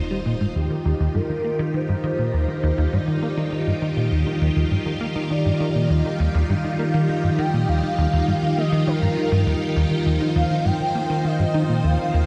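A huge ambient reverb with an 8.7-second tail surrounds this short cut from a longer piece of sequencer-driven space music, luminous and expansive in Eb major at 101 BPM in a straight 4/4. From the very start, a lush, vintage string machine holds sustained full-ensemble chords on an Ebadd9 harmony, its slow-attack sawtooth tone thickened by ensemble chorus and shimmer reverb. A deep, round sine sub bass sounds only briefly in the background and is gone by 0.5 s. Meanwhile a punchy, funky analog bass riff sits up front, its filter-plucked sawtooth and square tones colored by subtle chorus, cassette tape character and delay. From 0.6 s an expressive synth lead carries the melody between G4 and G5, smooth and evolving with vibrato, and dressed in ensemble chorus, shimmer reverb and delay.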